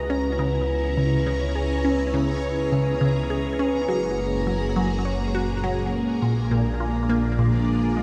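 An ambient excerpt in C# dorian at 103 BPM opens with lush, vintage string-machine chords under ensemble chorus, a fingerpicked concert harp ringing through delayed arpeggios, a squelchy, bright resonant blip pluck riff treated with phaser and delay, a fat, detuned analog bass and a faint bubbling stepped-filter texture with chorus, all moving from C#m7 through F#add9 to A#7 in a dark, hypnotic, cosmic hall ambience.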